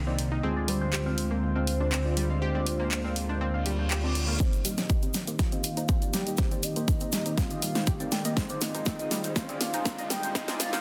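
A smooth, sidechain-pumped analog pad and a deep, rumbling detuned saw bass open this dreamy, emotional progressive house excerpt, joined by a round, chorused analog pluck arpeggio, glossy retro polysynth stabs with phaser and delay, a pop drum kit of handclaps, hi-hat and fat snare, and a full-bodied octave-layered lead melody with vibrato and 12-bit grit, before a very quiet reverse cymbal and riser arrive at 3.6 seconds, the bass drops out at 4.4 seconds as a punchy electronic kick and a grainy tube shaker enter, and filter sweeps drive a build-up with a drum fill under a dense, heavily limited master.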